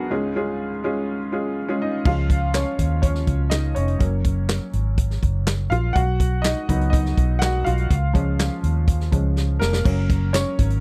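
A clear, woody upright piano opens this uplifting, hopeful piano-driven pop excerpt at 123 BPM, joined at 2.1 seconds by a dark, round, foam-muted electric bass and a natural, punchy country drum kit with handclaps, hi-hat and crash, as the slightly detuned piano takes a solo over C#, F# and B chords that closes with a drum fill, followed by a faint jingly tambourine touch at 10.4 seconds, all in a dry, close 1970s-style studio sound.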